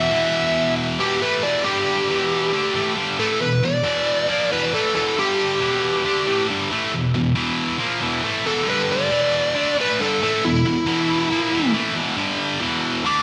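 A straight, driving four-beat pulse carries this aggressive rock cut, taken from a longer piece. A heavy, double-tracked high-gain guitar sits up front with a bright, distorted riff in the low register, moving through a short cycle of E5, G5 and E minor that repeats every few seconds. Over it, a smooth overdriven lead guitar with a warm tone and slapback echo picks out the melody, launching into a solo at 1.0 seconds that runs to the end at 13.2 seconds. The whole mix is bathed in a lush hall reverb with a long tail, giving the two guitars a big arena sound.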